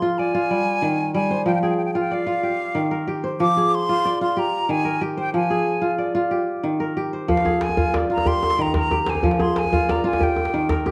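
A dark, warm production sits in a moderate recital hall reverb, giving this short cut from a longer West African string and xylophone piece a hypnotic, reflective air in a straight 12/8. The kora carries the arpeggios from the start, fingerpicked and ringing, crisp and up front as it moves between Eb and F minor chords. Above it, a bright silver concert flute plays the melody from F5 to D6, airy with a soft attack, lifted highs and expressive vibrato. At 7.3 seconds a djembe enters, tight and cracking, with a vintage, band-limited tone placed up front. The two harmonies keep cycling to the end at 10.9 seconds, lending the passage its trance-like pull.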